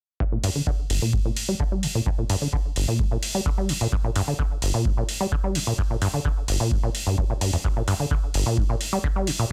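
Driving and trippy, this short acid house cut runs at 129 BPM in a straight 4/4 and sits in G minor. A squelchy, resonant sawtooth acid bass carries the riff from G1 to G3, up front in the mix with a fast attack and decaying filter pluck, coloured by tube saturation, sidechain pumping and delay, while a filter sweep moves across it for the whole passage. A deep, overdriven analog kick drum anchors the groove from 0.2 to 9.1 seconds, re-recorded in a large room. Metallic analog hi-hats, also overdriven and re-recorded in a large room, enter at 0.4 seconds and sit lower in the balance. Light reverb surrounds the parts, and the dense, heavily limited modern master keeps the whole fragment tight and forceful.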